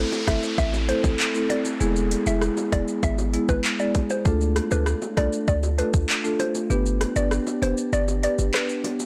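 A faint, glassy glass harmonica holds ethereal chords over a deep, boomy 808-style bass and an electronic downlifter as this tough, hypnotic dancehall excerpt opens at 98 BPM in A minor, before an overdriven island pop drum kit with a tight kick, metallic hats, handclaps, rim click and shaker arrives alongside low-tuned bongos in the background, a round FM mallet-like synth pluck melody treated with chorus, phaser and delay, and a woody, close-miked marimba accompaniment, the harmony moving through Am, E, Dm and G in a dry, blown-out mix where the kick drops away at 6.7 seconds.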